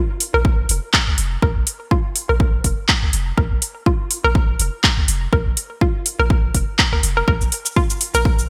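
A bright, 1980s-style digital sheen with light reverb frames this cool, hypnotic minimal techno excerpt in Bb minor at 123 BPM with a 56% swing on the sixteenths, where a punchy electronic kick and a house kit of handclaps, shaker and metallic hi-hats sit up front, a deep sine sub bass with a pitch-drop attack pumps beneath them, and a hollow, bouncy square-wave pluck riff, detuned and wave-folded, with chorus, cassette tape grit, delay and sidechain pumping, repeats over a Bb chord from 0.3 to 8.2 seconds.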